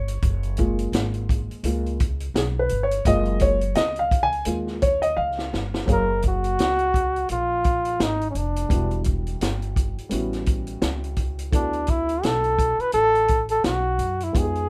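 Smooth and cool, this jazz-hop excerpt at 85 BPM with a swung 4/4 feel opens on a dark, mellow baby grand piano with audible action noise, taking a solo over woody, growly pizzicato upright bass and a vintage acoustic drum kit with a punchy kick and rolled-off top, until a drum fill at 5.2 seconds ushers in a breathy flugelhorn melody at 5.9 seconds, its vibrato and scooped notes sitting up front over chords moving from F#maj9 through Em9 and A13 to D69 in a rough home demo mix with light reverb.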